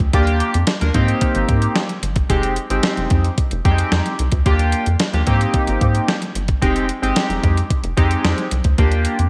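Early-eighties boogie funk with a late-night, funky mood, this short cut from a longer piece rides a clean 12-bit drum machine whose thumpy kick, fat snare and hi-hat sit up front with a tape-warm, sampler-style punch. A rubbery, hollow square bass bounces underneath with a dark, resonant filter pluck and a moving notch, while a glossy, chorused polysynth floats bright, evolving pulse-width chords through Ebmaj7, Abmaj9 and Fm9. A moderate echo chamber reverb lends the groove a roomy sheen.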